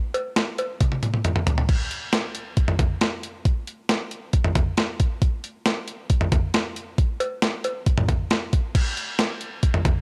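A dry, gritty hardware recording with light reverb carries this bright, wistful pop excerpt at 136 BPM in straight 4/4, where a clean, tape-warm 12-bit drum machine sits up front with a thumpy kick, medium-tuned snare, hi-hat, toms, cowbell and crash cymbal, throwing in a drum fill at 0.8 seconds before settling back into the groove.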